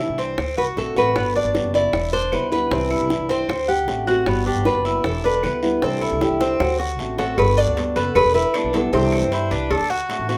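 A moderate studio reverb frames this danceable Cuban son and guajira fragment in straight 4/4, cut from a longer piece and cycling through D7, Gmaj7, Em7 and Cadd9. A bright, full-bodied nylon-string guitar carries the melody up front with audible finger squeak, over a dark fingerpicked steel-string guitar, a metallic double-strung tres playing arpeggios, and a woody pizzicato upright bass. Round, low-tuned bongos and cowbell sit in the background with distant claves, while a raspy guiro sounds close and dry. A drum fill arrives at 6.2 seconds, and a breathy jazz flute with vibrato and crisp chiff adds a second line from 9.3 seconds.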